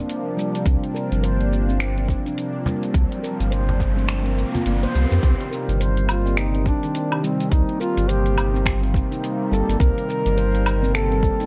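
A detuned sawtooth pad with chorus and sidechain pumping opens this hypnotic organic downtempo piece in C minor, alongside ringing, meditative handpan arpeggios through digital delay. Metallic hats, finger snaps, shaker and woodblock from an overdriven deep house kit then join an up-front, round sub bass and a deep overdriven electronic kick at a swung 105 BPM, while a brief woody cajon and an electronic riser lead to the kick dropping out from 4.1 to 5.2 seconds. At 5.2 seconds the harmony moves from Bbadd9 to Cm7, and a mellow, folk-style duduk enters at 6.1 seconds with a smooth top and delay, all set in light reverb with a warm overall glow.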